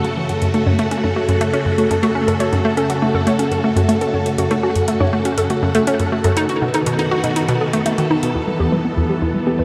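Drenched in a huge, wet ambient reverb with a long, hanging tail, this excerpt of sequencer-driven space music feels cosmic and hypnotic over a straight, steady four-beat pulse. Up front, a hollow, bouncy square-wave pluck plays a detuned, chorused riff, its tape echo repeating each note. A bright, swirling string machine holds slow-blooming sustained chords, shaped by ensemble chorus, phaser and shimmer reverb. Further back, a mellow, warbling pluck spins lo-fi arpeggios roughened by 12-bit sampler grit, with tape echo and shimmer reverb of its own. Electronic hi-hat and bongos with metallic, analog-sounding hats fade in from the start and stop at 8.3 seconds. The harmony moves from F#m to B7 at 6.4 seconds, then settles on Em at 8.4 seconds, where a filter sweep moves across the arpeggio sound.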